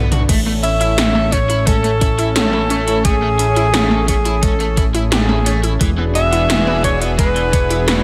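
Lightly reverberant, this romantic, uplifting synthwave excerpt at 87 BPM in A major opens on a drum fill from 80s electronic pad drums with gated snare and toms and metallic hats, alongside a glossy, mellow chorused synth bass up front, a lush, detuned unison pad pumping with sidechain, a round analog pluck arpeggiating quietly in the background through cassette tape and tape echo, and a bright, double-tracked overdriven electric guitar riff. A thumpy overdriven electronic kick joins at 0.3 s, before a clear alto saxophone enters at 0.6 s with vibrato and scooped notes through digital delay, sailing over Amaj7 until the harmony shifts to E7 at 5.8 s.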